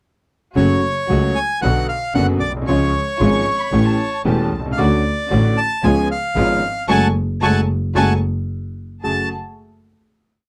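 Melancholic and sultry, this short tango unfolds with a rubato feel in four. A reedy bandoneon carries the motif-based melody up front, while a brilliant concert grand piano with deep bass and a bowed double bass, played with vibrato, portamento and a soft attack, mark a marcato tango rhythm beneath it. A dark string section with gut-string tone sits in the background, adding period-style stabs in the same marcato pulse. From 3.2 seconds a lush violin section enters with smooth answering phrases in the melody's rests. The whole band accents from 6.9 seconds, and the piece closes on a final chord at 9.0 seconds, captured in a dry, close 1970s-style studio sound.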